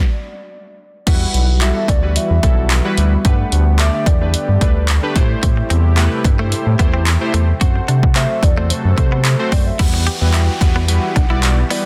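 A bittersweet yet confident dance-pop groove, cut from a longer piece, opens with a hollow, woody synth lead singing its melody alone before the full band arrives at 1.1 seconds. A punchy analog drum machine with a tape-warm kick, handclaps, hi-hat and crash cymbal sits up front beside a round, deep analog bass, both driving the straight 4/4 pulse as the bass pumps under the sidechain. Warm, airy analog keys with a detuned, warbling vintage character and a bright chorus shimmer carry the accompaniment, while a smooth, slow-attack pad holds sustained chords in the background, both breathing with the same pumping effect. At 5.4 seconds a twangy, clean, direct-recorded electric guitar adds a compressed picked riff low in the mix, and the lead's soft vibrato rides on chorus and digital delay. The chords move through a wistful minor cycle, and a downlifter sweeps in beneath the dense, heavily limited master at 9.8 seconds.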